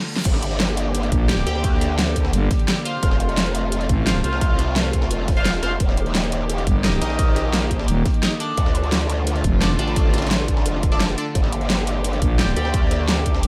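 Dark technical drum and bass, aggressive and futuristic, with a punchy electronic kick, a huge-snared dubstep kit with metallic hats, and a very quiet, gritty breakbeat kit alongside a wobbling, formant-filtered growl bass with chorus and a thick FM bass with tube saturation that surfaces in bursts, while nasal band-passed sawtooth chord stabs with phaser and tape echo flicker above distant, floating sul tasto strings that pump with the sidechain through a drop from 0.3 seconds moving from Gm through F, Eb and Dm back to Gm.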